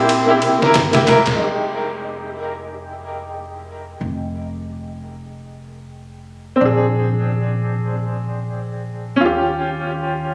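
A swung 92 BPM trip hop groove in 4/4 opens over a C7 chord with a gritty, pitched-down sampler-style kit of ride cymbal and snare up front that drops out at 1.4 s, leaving a dark, cinematic F minor fragment of a longer piece carried by a bright upright piano with tremolo and tape echo whose low-passed tone sweeps from that point through Fm7, Bb7 and Eb7 chords, over a woody pizzicato upright bass, while a nasal, bowed cello with vibrato and dub echo sounds briefly in the background until 0.8 s, all caught in a small room on a phone with light reverb.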